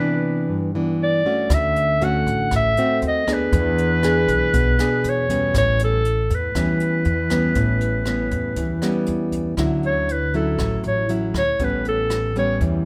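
Bossa nova with a breezy, sophisticated air, cut from a longer piece: a fingerpicked nylon-string guitar and a clear, punchy clarinet with light vibrato sit up front from the start, an upright bass with woody pizzicato and a brushed drum kit with a boomy kick, hi-hat and rim click join at 1.5 seconds, and the clarinet takes a forceful, jazz-style solo from 9.6 seconds over chords such as Dmaj7, E7 and A9, all set in a moderate large-studio reverb.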